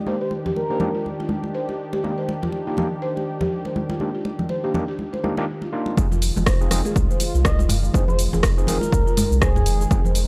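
Spiritual and warm, this afro house excerpt at 122 BPM in F dorian, with a swung 16th feel, opens on a warbling, detuned analog pad with chorus and vintage sampler grit, woody buzzing marimba arpeggios, overdriven electric piano stabs through a low-pass filter, and bright soft-handed congas, all over Ebmaj7 chords, while an expressive vibrato synth lead with tape echo sings briefly from 0.2 seconds and returns at 7.4 seconds. At the 6.0-second drop the harmony shifts to Fm7, and a round sub bass with tube saturation, a punchy kick and a house kit of hi-hat, rim click, shaker and toms arrive, the bass pumping beneath the pad, marimba and piano in a dry, hardware-recorded mix.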